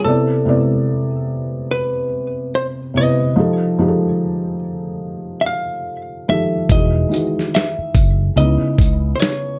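Swung sixteenths give this dreamy, nostalgic lo-fi hip hop fragment its lilt, as a clean, picked hollow-body jazz guitar carries the melody through plate reverb over a soft, felt-muted upright piano with audible action noise and cassette-tape haze, before a gritty, sampler-style drum kit with a thumpy kick and fat snare and a round fingered electric bass arrive at 6.7 s, joined by a faint, jingly tambourine at 7.1 s, in a dark, mellow production.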